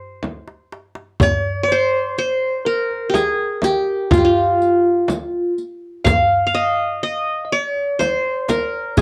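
Arabic maqam ensemble music in a longing, soulful mood, moving in a straight 10/8 cycle, with a bright, plectrum-plucked qanun carrying the melody up front, its triple strings ringing with a crisp edge. A drum fill from the clay-shelled darbuka and the deep, large frame drum opens at 0.2 seconds, and at 1.2 seconds a very quiet, bell-like tine electric piano adds a clean second line while a riq's jingles glitter in the background. The whole cut sits in moderate studio reverb and carries the worn, warbling pitch drift of old cassette tape.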